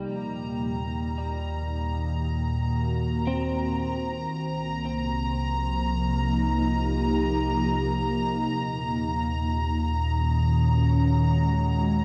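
Soaked in a huge, dreamy reverb, this serene, reflective ambient excerpt in free time fades in on a glassy, ethereal FM pad holding slow-attack chords through ensemble chorus and phaser, alongside a round sine sub bass, while a bright, twangy clean electric guitar picks arpeggios through tape echo until 6.1 s and a distant chamber violin section holds a high Bb5 with light vibrato over Ebm, Cm7 and Ebm7.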